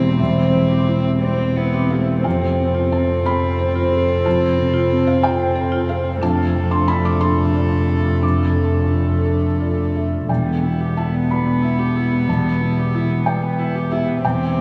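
A rubato 6/8 lilt at 60 BPM carries this fragile, melancholic neoclassical fragment for piano and strings, where a felt-muted upright piano with audible action noise and a subtle chorus plays mellow accompaniment, a dark sul tasto viola floats alongside a warm, pure cello second line, a rich, up-front double bass holds the low end with light vibrato and an airy bow, and woody hard-mallet marimba arpeggios drift through a diffuse ambient delay until 10.2 s, all of it soaked in huge, dreamy reverb over chords moving from C/E through F and Dm/F to Em.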